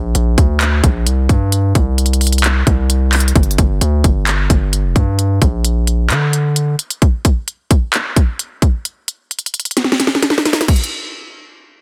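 A half-time 4/4 groove sets the pulse for this dark, eerie trap cut, taken from a longer hip hop piece. An electronic drum kit sits up front, its hard-clipped kick and sharp snare driving the beat beneath crisp hi-hats, handclaps and crash cymbal. A heavy, punchy 808-style bass, built on a sine tone with a noise layer, strikes with a fast attack and decays, ranging from F1 to D3 before dropping out at 6.8 seconds. From there the drums carry the track alone, including a fill from 9.8 to 10.7 seconds. The sound is dry and dense, with a heavily limited modern master.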